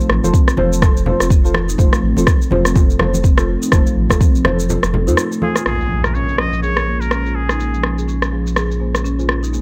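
A dark, hypnotic afro house groove at 124 BPM in Bb minor, cut from a longer piece, sits in light reverb with a deep, layered electronic kick and a produced electronic shaker and rim click pushed up front, swung on the sixteenths. Underneath, a round sine sub bass with a fast attack pumps with sidechain compression, while a moody sawtooth pad with a slow attack and sub octave hangs in the background under chorus and phaser. A woody rosewood marimba played with medium mallets spins arpeggios through tape echo and a low-pass filter, and a soft, wave-folded chord stab adds short, mellow hits with its own chorus, phaser and echo. Low-tuned, ringing congas struck with hard hands sit back in the mix until 5.5 seconds, and the kick drops out at 4.3 seconds, ahead of a short break from 4.7 seconds. At 5.4 seconds a nasal, bright trumpet with straight mute enters, playing a jazz-style solo line with vibrato and scooped notes through tape echo. 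From 5.7 seconds the harmony moves from F to Bbm7, a filter sweep runs across the marimba, and a faint electronic impact sounds.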